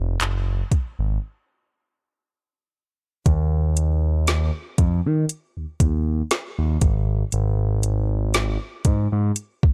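Set in a digital ambience, this longing, sensual contemporary R&B excerpt opens with a saturated, mellow sawtooth-and-triangle synth bass that glides with portamento and vibrato up front, joined at 0.2 seconds by a lightly swung electronic drum kit of soft kick, woody snare, metallic hi-hat and handclaps, with a break from 1.2 to 3.3 seconds before the groove moves into a new section.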